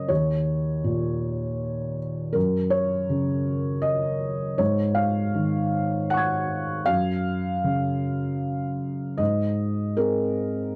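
A felt-muted upright piano plays alone, dark and up front with a soft touch through thick felt, in this intimate, wistful neoclassical minimalist passage in 3/4 at 79 BPM with a rubato feel, moving through Eb5, Gb5, Ab7sus4, Gb5 and Ab chords across a range from Eb2 to Ab6, captured in a dry, close 1970s-style studio sound with light reverb.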